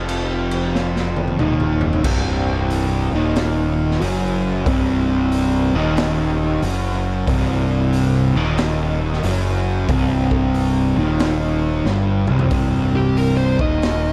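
A double-tracked fuzz guitar riff sits up front in this short, hypnotic stoner and doom metal excerpt at 92 BPM with a swung 4/4 feel, alongside punchy overdriven picked bass and a gritty, boomy raw garage drum kit in a pumping small room, with drum fills before the Cm riff lands at 2.0 seconds and a dark fuzz lead guitar solo entering at 13.0 seconds, all in a dry, shadowy production.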